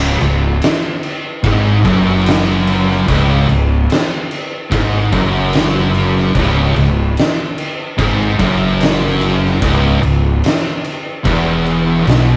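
A rough rehearsal-room recording with light reverb and saturation frames this brooding, hypnotic stoner and doom metal excerpt, which rests on a single chord for its 12.4 seconds. An oversized, low-tuned acoustic drum kit sits up front in a bright stone room, its boomy kick, fat snare and crash cymbal gritty and saturated, beside a fingered electric bass heavy with overdrive and fuzz. Behind them, two thick fuzz guitars, one of them dark, and a bright, overdriven, double-tracked electric guitar grind out a low picked riff in the background.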